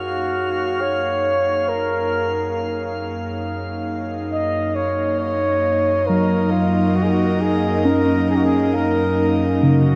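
Ambient piece at 68 BPM in F# major, luminous and weightless over a single F#maj7 chord, where a mellow, distant flugelhorn with vibrato sings an up-front melody through diffuse delay above an airy, breathy pad that fades in from 0.0 to 10.0 s, muted felt-like synth keys play dark, warbling, vintage arpeggios with chorus and delay, and a glassy texture of drifting overtones fades out high above, all set in a deep cathedral reverb.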